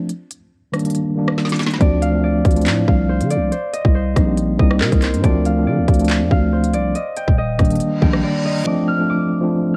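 Ominous and dark, this short cut of half-time drill hip hop at 140 BPM in D phrygian opens with a mellow tine electric piano, low-pass filtered and tape-worn, over up-front electronic drums with a hard-clipped kick, woody snare, crisp hats, handclaps and rim clicks. At 1.8 seconds a growling, buzzy 808-style bass with fast-attack, decaying notes arrives alongside a fingerpicked Celtic harp melody, ringing yet muffled by its own low-pass filter, as the chords move between Ebmaj7, Dm7 and Cm7. A reverse cymbal leads toward the close, and the drums and bass fall away at 8.2 seconds. Once the cymbal finishes, only piano and harp remain in a dry, homespun cassette recording.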